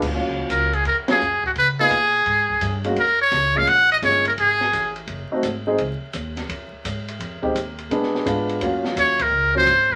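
A swinging 170 BPM pulse in 4/4 drives this moody, late-night small-group jazz excerpt, where a polished, present baby grand lays down chords from a rootless Ebm7 through Gbmaj9 and Ab7b9 beneath a buzzy, metal-muted trumpet that sings up front with light vibrato and scooped notes from 0.5 to 4.9 seconds and returns at 9.0, while a woody, thumpy pizzicato upright bass and a dark, rolled-off drum kit with a boomy kick and high-tuned snare sit further back, the band hitting accents at 1.0 and 9.1 seconds amid vinyl crackle and modest studio ambience.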